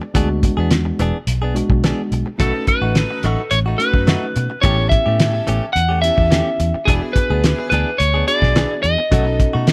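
Straight-eighth soul blues with a gritty, soulful mood, cut from a longer piece, where a dark, slightly broken-up electric guitar carries the melody up front over a muffled, cloth-damped drum kit with a fat snare, a round, foam-muted vintage fingered bass, warm tine electric piano accompaniment and twangy, direct-recorded clean guitar stabs, while a lush bowed string section enters at 2.4 seconds with sustained chords in the background, all in a dry mix.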